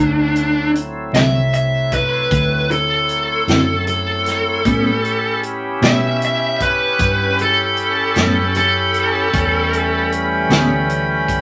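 Soulful and gritty, this slow blues excerpt in 12/8 features a smooth, overdriven lead guitar soloing up front over reedy tonewheel organ chords turning through a slow rotary speaker, a round, foam-muted fingered bass, a natural country drum kit with punchy kick, and a mellow clean electric guitar with tremolo, while a bright, close-miked horn section adds sustained chords from 4.7 s, all set in wet studio ambience with vinyl crackle.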